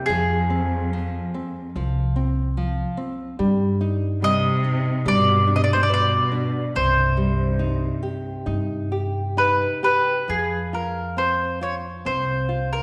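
A mournful, longing fado-style ballad fragment in C harmonic minor opens with a round, up-front mandolin carrying the picked, double-string melody over fingerpicked nylon-string guitar with a woody, full-bodied classical tone, while a distant bowed cello sings a smooth second line with vibrato. A growly pizzicato upright bass joins at 0.1 s, and the slow 4/4 pulse of 65-73 BPM breathes freely in rubato as the harmony moves from Fm through Cm/G and G to Cm. The cello falls away at 8.4 s before a brief new passage settles on F5 at 10.3 s, all bathed in the wet, lingering reverb of a church or concert hall.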